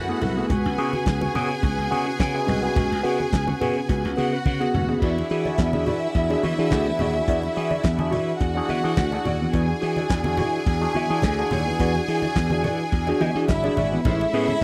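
Disco at 106 BPM in a straight 4/4, danceable and sultry, cut from a longer piece and captured as a dry, close 1970s-style studio recording: a muffled, up-front soul drum kit with a fat snare and tight kick sits with low-tuned congas in the background, while a growly, punchy slap bass drives the low end. A gritty, overdriven tine electric piano through a phaser and a dark, compressed electric guitar with analog chorus fill in the accompaniment, a smooth tonewheel organ holds sustained chords through a slow rotary speaker, and a lush, bowed string section carries a second line up front. A drum fill at 4.5 seconds leads from the opening C#7sus4 passage into an E9 section at 5.0 seconds, arriving on Amaj7 at 14.0 seconds.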